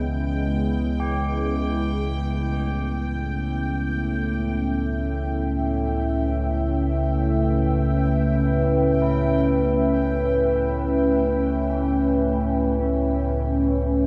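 This ominous, unsettling dark ambient drone, cut from a longer piece, opens on a deep, moody sawtooth pad in detuned unison with a sub octave, its wave-folded, ring-modulated tone softened by chorus and shimmer reverb as it sustains chords up front. Beneath it, a rumbling drone of triangle and sawtooth fades in low and dark, colored by a phaser. Above both, a bubbling, resonant texture fades in, its random filter steps giving a bright, restless glint under chorus and shimmer. At 1.0 seconds soft tubular bells join in the background, their solemn, metallic ringing spread into arpeggios through tape echo and shimmer reverb as they fade out. In free time, the harmony moves from C#m to A at 1.8 seconds, and a cathedral-like reverb with a 5.8-second decay wraps the dark production in a cavernous haze.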